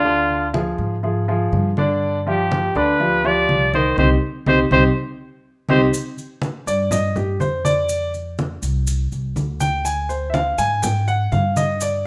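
The recording sits in a large studio with moderate reverb, and this short cut from a longer Cuban son and guajira piece moves at 122 BPM in a straight 4/4 with a nostalgic, sultry mood. A breathy, whispered trumpet carries the melody up front with soft attack and vibrato, its intimate vintage tone giving the opening a pop-style lyricism before it falls silent at 5.8 seconds. Underneath, a clear grand piano plays arpeggios through chords such as Ddim, G7 and Cm, while a woody, growly upright bass in pizzicato holds the low end with a dark steel-string edge. Low-tuned congas with a thick, damped skin and soft hands add a warm, band-limited pulse, and the band lands an accent just before the second section. At 5.9 seconds the piano takes a solo over Ebmaj13/F, F5 and Fmadd9 as grainy, mellow maracas join in quietly behind it.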